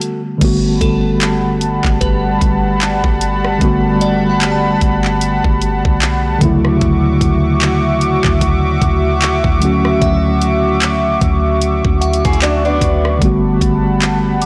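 A mellow tine electric piano carries the accompaniment in this tender, romantic contemporary R&B excerpt at 75 BPM in G lydian with a swung 16th feel, moving from Gmaj9 to Dmaj9 at 6.4 seconds over a smooth, detuned sawtooth analog pad with chorus and sidechain pumping, a deep, boomy 808-style sine bass, an up-front electronic drum kit with knocking kick, handclaps, hi-hat, rim click, crash and a softly clipped snare, a faint crystalline FM bell warbling with chorus, tremolo and tape echo, and a boxy picked archtop guitar with finger squeak and tape echo that returns at 12.2 seconds, captured in a blown-out, overdriven recording with light reverb.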